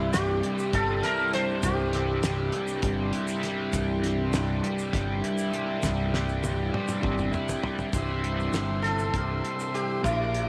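A double-tracked, overdriven electric guitar sits up front with a riff through a rotary speaker, while a buzzing, shimmering sitar carries the melody with tape echo from the start to 2.8 seconds and returns at 8.8 seconds in this hypnotic, trippy psychedelic rock excerpt in 7/8 at 200 BPM, in C mixolydian. Underneath, a dark, round overdriven bass, a vintage combo organ holding sustained chords with spring reverb in the background, and a very quiet, reedy harmonium drone that stops at 8.0 seconds fill out the sound. A dry 70s drum kit with a fat snare and tight kick plays alongside a grainy, mellow tube shaker and adds a fill from 5.8 to 7.9 seconds, all in light reverb.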